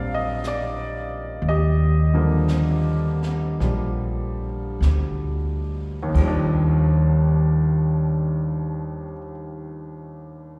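Jazz ballad in Eb major, romantic and tender, moving at a slow 43 to 62 BPM in a swung 4/4 that slows down over its first 6.2 seconds, opening on an Ebmaj9 chord in this short cut from a longer piece. A clear, up-front baby grand piano with a slapback echo carries the accompaniment throughout, while a woody, growly pizzicato upright bass on steel strings anchors the low end until 9.1 seconds. A soft brushed drum kit with dark cymbals, a high-tuned snare, a boomy kick and its own slapback echo sits far back and drops out at 7.3 seconds, all heard like a live gig through a venue's PA in a recital-hall reverb.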